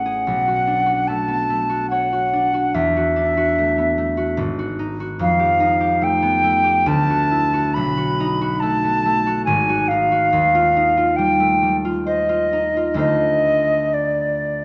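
A fingerpicked, ringing concert harp and an airy, straight-toned silver flute with a crisp attack open together in this mysterious, hazy impressionist chamber fragment, drifting in rubato 3/4 at roughly 63-75 BPM, the flute's melody floating high over the harp's deep-reaching accompaniment through shifting colours from Bm9 to F9, Eb69 and a closing Dm7, all bathed in a moderate recital-hall reverb.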